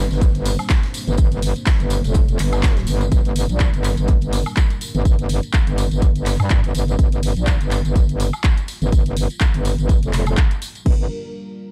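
A dark, warm mix opens this gritty, bouncy bass house excerpt at 124 BPM in G minor, swung on the 16ths over a single G minor chord, where a punchy, layered electronic kick and a saturated, metallic FM wobble bass with chorus and sidechain pumping sit up front, a house drum kit adds crash, handclaps, hi-hat and woodblock, a jingly acoustic tambourine stays in the background, a very quiet, detuned sawtooth pad holds moody sustained chords, and an oversized low-tuned acoustic kit with a fat snare, shaker and hi-hat plays faintly until 3.0 seconds.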